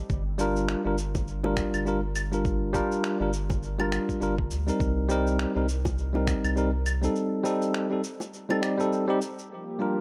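A round, deep analog bass opens this smooth sunset chillout excerpt in G minor at 102 BPM, joined almost at once by a gritty, overdriven, thumpy electronic kick and a sampler-style layer of cabasa, finger snaps and claves, all carrying a lightly swung sixteenth-note feel. A bell-like tine electric piano sits up front with sampler grit and tape echo, while soft-handed, low-tuned bongos enter close and dry at 1.1 seconds, as the chords move from Gm7 through Cm7 to Am7b5. The bass drops out at 7.1 seconds, and at 9.5 seconds a lush, bowed string section arrives with vibrato and portamento, all under a light reverb.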